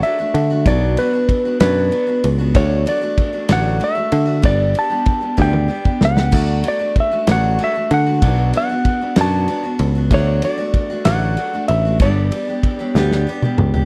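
A slow, straight 6/8 lilt at 64 BPM carries this nostalgic, hopeful folk rock and heartland rock excerpt in D major, cycling through D, Bm and G. A growly, direct electric bass enters at 0.3 seconds beneath a small-room country drum kit with dark cymbals, a tight kick and a medium-tuned snare, which plays fills at 5.4 and 12.9 seconds, while a bright, full-bodied jumbo acoustic guitar picks the accompaniment. Up front, a clean, compressed lap steel sings the melody with fingerpicked slide and slapback echo, all captured in a dry, close 1970s-style studio sound.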